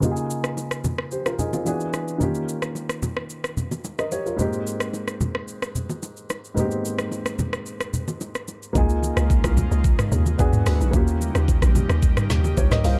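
Soulful and warm, this amapiano excerpt opens with a dark, mellow baby grand piano playing an intimate accompaniment with audible action noise up front. Beneath it sit a tape-warm electronic R&B drum kit with a knocking kick, woody snare and warm hats, plus ringing, close-miked congas and bongos. The kick drops out at 6.6 seconds, and at 8.8 seconds the drop arrives: a hollow, bouncy log drum bass with a fast attack and a decaying tail takes the low end. An airy, breathy pad with slow-blooming, chorus-treated chords joins it, all in a dark, dry production.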